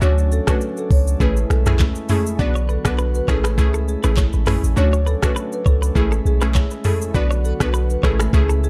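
A dark, dry mix carries this joyful, breezy afrobeats clip, where a deep, boomy 808-style bass and a knocking electronic drum kit of snaps, handclaps, smooth hats, rim clicks, shaker and toms sit up front beneath a warm marimba melody with tape echo, a glassy, detuned wavetable pluck with chorus, and light, bright chamber-organ flute chords in the background, joined at 2.6 seconds by a twangy, clean direct-recorded electric guitar riff that also carries tape echo.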